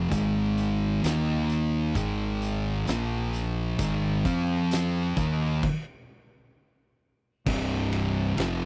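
A slow, straight four-beat pulse drags through this brooding, ominous stoner and doom metal fragment, cut from a longer piece. Two thick, dark fuzz guitars pick the riff, one up front and the other sitting in the background, moving through heavy Ab5, Eb5 and Bb5 power chords. A growling fingered electric bass, bright and overdriven, holds down the low end beneath them, while an oversized low-tuned acoustic kit pounds out a boomy kick and fat snare with dark cymbals and a gritty, saturated, rolled-off top, set in a bright stone room. The band halts in a stop from 5.6 to 7.5 seconds, then lands on a C5 chord for a brief closing passage. The sound is dry and close, with the feel of a 1970s studio recording.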